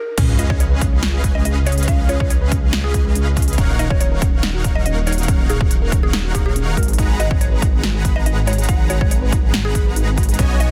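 This future bass excerpt is bittersweet and lush, moving in a half-time feel as it launches into the drop at 0.2 seconds after a brief break. A woody, mallet-like synth pluck carries the melody with subtle chorus and delay, while a soft, dark pluck traces arpeggios in the background, colored by chorus, cassette tape character and delay. Huge, bright supersaw chords play a riff over Db7, Ebm7 and Abm7, and a thick detuned saw bass sits up front with tube saturation and chorus. A punchy, overdriven electronic kick and a big-room dance drum kit with crisp hats, snare and crash cymbal drive the groove, and a very quiet sub drop marks the impact until 1.9 seconds. Sidechain pumping breathes through the melody pluck, arpeggios, chords and bass, and the mix is dense and heavily limited with little reverb.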